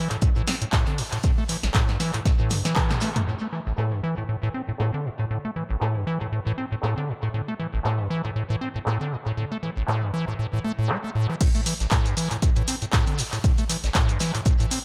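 A squelchy, resonant square-wave acid bass rides up front through this driving, trippy acid house excerpt at 118 BPM in A minor, its saturated filter plucks trailing tape echo and sweeping through a filter from 3.3 to 11.4 seconds. Underneath runs a punchy analog drum machine with crash, handclaps, hi-hat, shaker, snare and toms, all darkened by low-pass filtering and echo, while a very quiet, mid-forward soul kit with a rolled-off top and an up-front electronic kick join only in the opening bars and again at the drop at 11.4 seconds. A drum fill and band accent close the first section, and the whole mix is echo-heavy with light reverb and a 56% swing on the sixteenths.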